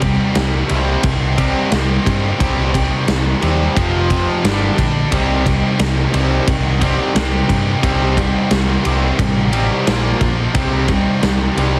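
Heavily compressed with a radio-style sheen, light reverb and studio ambience, this aggressive, heavy hard rock excerpt at 88 BPM in C minor pairs a bright, double-tracked high-gain guitar riff with a distorted electric guitar and an overdriven semi-hollow guitar sitting further back, all over a dark, round picked electric bass and an up-front big rock drum kit with a punchy kick, medium-tuned snare and ride cymbal, moving from Cm through F5 and G5 at 3.8 and 4.4 seconds before a Bb5 turn at 9.9 seconds.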